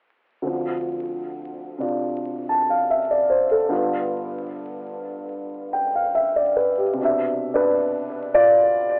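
A relaxed swing at 74 BPM in 4/4 sets the pace, its eighths lilting at 67% while the time bends freely in rubato. This is solo jazz in C major: a dark upright piano plays alone from 0.4 to 9.0 seconds, ranging from D2 to A5, mellow and woody with audible action noise that keeps it intimate and up front. The harmony moves from Dm7 to G7 at 3.7 seconds, then settles on Cmaj9 at 7.0 seconds as a second section begins. Cassette tape coloring and tape echo give the piano a vintage, smooth character. The whole recording carries vinyl crackle and a narrow telephone-like tone, with moderate studio reverb around the home-recorded cassette sound. The mood is warm and unhurried, and the clip is cut from a longer piece.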